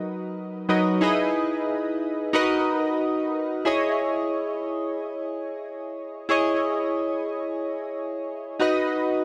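A straight 4/4 pulse at 91 BPM carries this nostalgic, uplifting pop fragment in B major, cut from a longer piece. A single part plays alone: chorused retro synth keys spanning F#3 to D#5, sitting bright and up front with a glossy sheen. Their tone blends pulse wave and sawtooth, with pulse-width modulation, detuned voices and a filter sweep, while each note has a fast attack and then decays. The harmony moves from Bmaj7/F# through Emaj7 back to Bmaj7, then settles on C#madd9 from 3.7 seconds before resolving to B at 8.6 seconds. A digital delay trails the keys, and a moderate plate reverb with a long 2.7-second tail gives the short passage a spacious glow.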